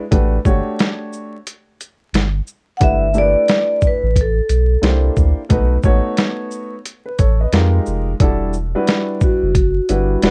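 A dark, warm mix with light reverb and a bed of vinyl crackle sets a nocturnal, mellow mood for this jazz-hop piece, cut from a longer hip hop track at 89 BPM in 4/4 with a swung sixteenth-note feel in E dorian. A gritty, compressed sampler-style drum kit sits up front with a thumpy kick, a medium-tuned snare, hi-hat and shaker, all with a tape-warm character. Beneath it, a deep, round sine sub bass with a fast attack holds sustained low notes. A woody, vintage-sounding upright piano plays smooth accompanying chords that move through lush extended harmonies such as G69, C9 and Fm11 before settling on Em11. A metallic, ringing vibraphone struck with medium mallets carries the melody, entering at 2.8 seconds. After the piece shifts into a new section at 8.2 seconds, the vibraphone returns at 9.2 seconds for a brief solo turn.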